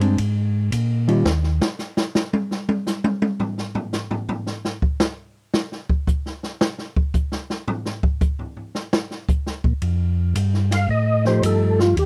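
An open, acoustic jazz drum kit with dark cymbals and a boomy kick takes a solo from 1.3 to 9.8 s in this swinging, bluesy soul jazz organ trio excerpt at 112 BPM, framed by a mellow, round tonewheel organ bass through a slow rotary speaker and a clean, fingered hollow-body jazz guitar, before a soft, flute-like percussive organ melody with chorus vibrato and key click enters at 10.7 s, all captured in a dry, close 1970s-style studio sound.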